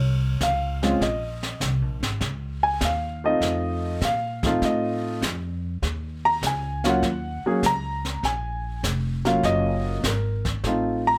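Late-night and cool, this jazz piano trio swings at 100 BPM in Bb minor in a short passage cut from a longer piece, set in light reverb. An up-front concert grand with a natural tone and deep low end carries the melody, while a woody, pizzicato upright bass on steel strings holds down the bass line from the first moment. A brush kit with a small-room sound, high-tuned snare, hi-hat and boomy kick enters at 0.4 s, over changes that move from Bbmadd9 through F7 and Ebm7.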